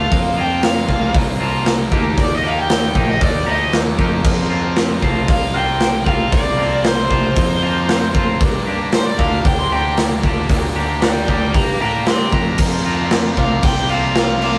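A straight 4/4 beat at 115 BPM drives this restless, bittersweet indie rock fragment: a big, punchy acoustic drum kit sits up front, a fuzz-laden picked bass pushes underneath, and a biting overdriven guitar riff stays in the background beside a twangy clean guitar riff. A buzzy vintage combo organ holds very quiet sustained chords with light vibrato, while a bright overdriven lead guitar with spring reverb solos until 12.6 s over chords moving from Fsus4 through Ebadd9 to Gm. A metallic, bell-like glockenspiel enters at 13.4 s, and the whole is heard in a rough rehearsal-room recording.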